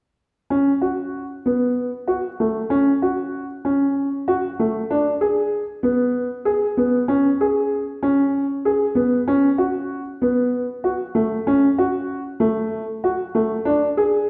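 Contemporary instrumental in a hypnotic, urgent 7/8 at 192 eighth-note beats per minute, this short fragment features a boxy, up-front concert grand piano with deep bass and short sustain cycling through arpeggios between A3 and G#4 from 0.5 to 14.3 seconds, shifting into a new section at 9.3 seconds, all set in the wet reverb of a recital hall.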